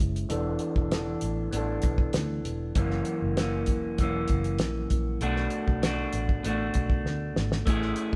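A twangy, slightly broken-up electric guitar through a small old amp opens this sunny, hazy bedroom-pop excerpt at 98 BPM, its pitch drifting warbly under a low-pass filter sweep, alongside a round, foam-muted fingered bass. A damped 70s drum kit joins at 0.2 seconds with a fat snare, tight kick and hi-hat, its top rolled off, sitting up front with the guitar as the band plays live in one room under light reverb. The chords move from E7sus4 to F#7 to Bm7, and a drum fill at 7.1 seconds rounds off the passage.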